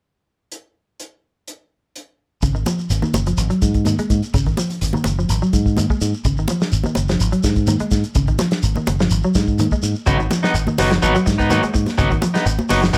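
A tight soul drum kit with a rolled-off top plays alone at the start of this defiant, funky afrobeat excerpt, moving at 126 BPM in a straight 4/4 in G# dorian. At 2.4 s the groove settles on G#m7: a round, punchy fingered bass sits up front, a clean hollow-body guitar plays arpeggios through analog chorus, and a grainy shekere joins, with ringing, high-tuned congas close behind. At 10.1 s a slightly broken-up, twangy electric guitar cuts in with stabs bathed in plate reverb, and the band sits in a moderate studio room.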